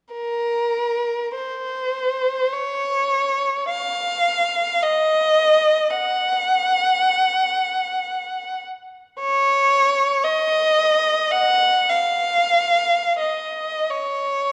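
Worn, warbling old cassette tape colors this recording, its pitch drifting unsteadily, while a moderate concert hall reverb of 2.2 seconds lends the sound a spacious tail. A single bowed violin plays alone from 0.1 to 14.5 seconds, its tone clear and focused, with vibrato, and placed close and up front. This is a classical piece for unaccompanied violin in free time and Db major, tuned to A4 = 442 Hz, and its expressive line stays between Bb4 and Gb5. The mood is lyrical and nostalgic, and the tape's wavering pitch deepens the sense of a faded memory. The recording is a brief fragment cut from a longer piece.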